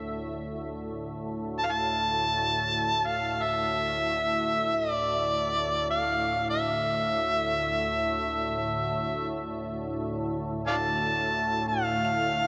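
Drenched in a huge ambient reverb, this haunting, spacious excerpt of free-time world meditation music in D hirajoshi, tuned to A4 = 441 Hz, rests on a pure, detuned organ-like pad drone with ensemble chorus from the start, over which an up-front overdriven harmonica enters at 1.6 seconds with a gritty, punchy solo melody full of tongue slaps, scooped notes and light vibrato, while shimmering, bell-like crotales ring very quietly at 12.0 seconds.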